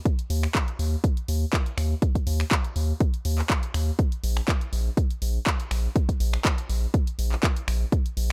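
Hypnotic and deep, this deep house excerpt rides a lightly swung 4/4 groove built on a punchy, overdriven electronic kick that sits up front alongside a house kit of finger snaps, handclaps and bright hi-hats, also pushed through overdrive. A round analog bass with a dark, sine-like tone and fast attack holds sustained low notes between Bb1 and Eb2, pumping through sidechain compression. The whole short cut is set in a digital ambience, running from the first beat to about 8.3 seconds.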